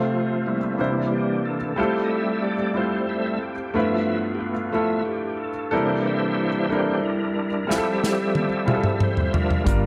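Jubilant and soulful, this slow gospel passage in 6/8 at 61 BPM in F major is cut from a longer piece and led throughout by a bright, reedy tonewheel organ solo, its key click, chorus vibrato and fast rotary speaker up front, over intimate baby grand piano accompaniment with audible action noise. The harmony moves through rich ninth and thirteenth chords, and at 7.7 seconds an acoustic small-room drum kit with a punchy kick and medium-tuned snare plays a fill across hi-hat, kick, snare and toms. A round, dark fingered electric bass arrives at 9.7 seconds, and a moderate echo chamber reverb gives the sound a natural bloom.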